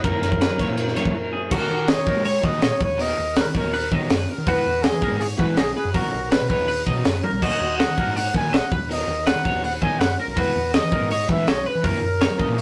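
A rough rehearsal-room recording with tube saturation and moderate studio ambience frames this bright, playful math rock and midwest emo excerpt at 163 BPM in B major, where a breathy, close-miked trumpet sings an intimate, whispered pop-style melody with vibrato and a soft attack. Underneath, a very quiet, twangy twelve-string electric guitar plays clean arpeggios with tremolo, while a second twelve-string picks accompaniment only until 1.5 seconds, when a brief break gives way to the main section's cycle of lush chords such as D#m7, Emaj9 and F#13. A double-tracked overdriven guitar riff sits in the background, a growling fingered bass adds overdriven weight, and an up-front, gritty fusion kit with a high-tuned snare and punchy kick drives the groove, marking 7.2 seconds with a fill.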